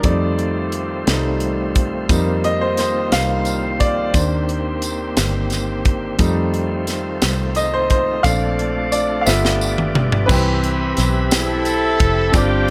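A light reverb colors this short cut from a longer slow gospel piece. It moves at 59 BPM in a straight 6/8 and feels jubilant and soulful. A brilliant, woody upright piano with long sustain carries a solo from the start over sustained chords on a reedy tonewheel organ, which has key click, light overdrive and a slow rotary speaker, while a dark, round fingered electric bass and a crisp fusion drum kit with bright cymbals, a high-tuned snare and a tight kick sit up front. A jingly tambourine joins at 2.1 seconds, and a drum fill leads into the new section at 10.3 seconds as the harmony moves from F7 through Bbmaj7 and G7 to Cmaj7. A mellow, tight horn section with light vibrato and a smooth top enters with the melody at 11.3 seconds, colored by slapback echo.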